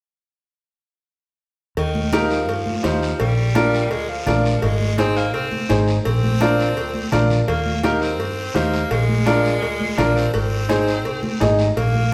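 An edgy, forceful tenor saxophone with vibrato plays a second line in this sunny, festive cumbia excerpt at 168 BPM in Eb major, over a bright, woody upright piano up front that enters at 2.1 seconds, a warm, foam-muted fingered electric bass, soft-handed high-tuned congas and ringing cowbell and timbales in the background, and a raspy, dry guiro, all played live in one room with a wet stone room reverb, the excerpt running from 1.8 to 12.1 seconds.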